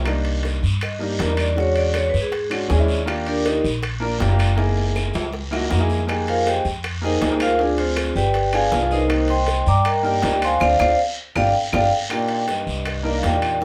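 Afro-Cuban jazz with a driving, fiery mood, this excerpt features a metallic, ringing vibraphone soloing up front over a thumpy, dark upright bass and an intimate upright piano with audible action noise, while high-tuned bongos, woody claves and distant timbales fill the background alongside a raspy guiro, with drum fills at 4.6 and 11.4 seconds and a band accent before a clear trombone enters at 12.1 seconds with scooped notes.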